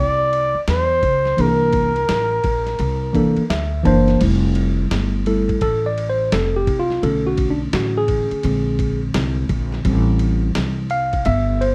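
A breathy, vibrato-tinged flugelhorn opens this relaxed, smooth jazz-hop excerpt at 85 BPM in F major, over a woody, dark pizzicato upright bass, with the horn's plate-reverbed line ending by 3.5 seconds. A compressed, pitched-down sampler-style kit with a thumpy kick and tape-warm, muffled tone settles into a swung groove as a worn, slightly out-of-tune tine electric piano enters at 1.4 seconds. The piano plays a short fill before taking a mellow solo from 4.2 seconds, all in a rough home-demo mix with moderate studio reverb.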